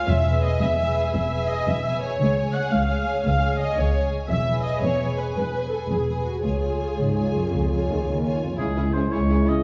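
Soaring and heroic, this short cut from a longer cinematic adventure score moves at 114 BPM in a straight 12/8, with the harmony alternating between E and C# before settling on C# minor. Lush bowed violin sections carry a vibrato-rich melody and a focused second line above a close, expressive viola accompaniment that sits up front with soft attacks and portamento. Dark, woody cellos and warm, woody double basses anchor the bass from the start. Timpani struck with soft mallets give a round, very quiet touch at 0.1 s and again at 8.6 s. At that second point a distant, roomy oboe adds a second line while a tight, mellow French horn section holds sustained chords. The whole orchestra is heard from further back in a wet recital hall, which lends the sound a generous, spacious glow.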